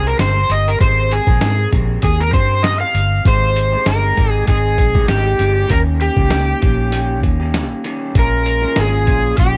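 A lightly swung 98 BPM groove in 4/4 comes from a round, foam-muted fingered bass sitting up front, joined a moment later by a muffled, pitched-down sampler-style drum kit with a thumpy kick, medium-tuned snare and hi-hat in this hazy, dreamy indie and bedroom pop piece in Ab major. An overdriven slide guitar carries the melody through lush chorus and tape echo, soloing over the first 3.2 seconds, while a slightly broken-up picked electric guitar through a small old amp adds quieter accompaniment with chorus and warbly pitch drift, as the chords move from Abmaj9 to Eb7 at 5.7 seconds and Bbm7 at 8.1 seconds. The dry home recording on cassette gives the track a worn lo-fi character.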